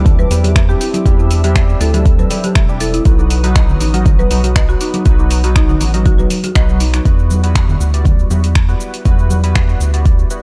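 Afro house with a hypnotic, earthy mood, cut from a longer piece: an overdriven deep electronic kick sits up front beside a round, wave-folded analog bass and an overdriven deep house kit of cabasa, finger snaps and hi-hat, while ringing, vintage congas play in the background. Above them a barky tine electric piano stabs with analog chorus and delay. A woody, rustic folk marimba plays arpeggios, a dark padauk-bar marimba carries a melody from 0.2 to 6.3 seconds, and a smooth, detuned sawtooth pad holds chords with sidechain pumping. The folk marimba and pad stop near 7 seconds, when the harmony moves from Cadd9 and B to Emadd9 in a dark, dry production.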